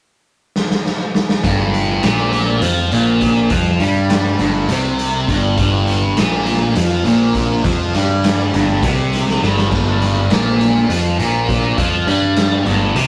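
Trippy and hypnotic, this psychedelic rock excerpt moves at 203 BPM in a lopsided 7/8, counted in eighths, with a straight feel in G minor. A raw garage drum kit of kick, snare, hi-hat, crash and splash opens at 0.6 seconds with a fill, its gritty, saturated tone dark with a rolled-off top and a punchy kick sitting up front. At 1.4 seconds the band settles on G minor as a thick, double-tracked fuzz guitar drives a riff between G2 and G3, its distortion coloured by a phaser. Alongside it, a round, overdriven picked bass digs into the low register from G1 to G2, while very quiet congas played with soft hands add a thin, bright skin sound underneath. A second brief drum fill arrives at 9.3 seconds, and the whole take carries the rough character of a rehearsal room, with tube saturation and a moderate studio ambience.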